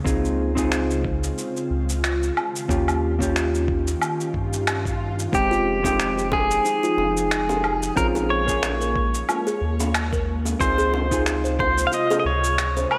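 Sunset chillout with a warm, wistful mood, moving at an easy swung pace in a 13-second excerpt cut from a longer piece. A dark, clean hollow-body jazz guitar, fingered and touched with tape and slapback echo, plays accompaniment beside an ethereal, detuned pad of sustained chords thickened by ensemble chorus. A round, deep analog bass sits underneath, while a gritty, thumpy electronic kick and sampler-style shaker, finger snaps and woodblock give the groove a compressed, small-room texture. After a faint electronic swell at 4.3 seconds, a bright, twangy pedal steel guitar takes the melody up front at 5.3 seconds, played with fingerpicks and slide, with volume swells and echoes. At the same moment a woody kalimba adds short arpeggios in the background, and tight, high-tuned bongos join distantly at 5.8 seconds. The whole mix is bathed in a wet concert-hall reverb that gives it a big arena sound.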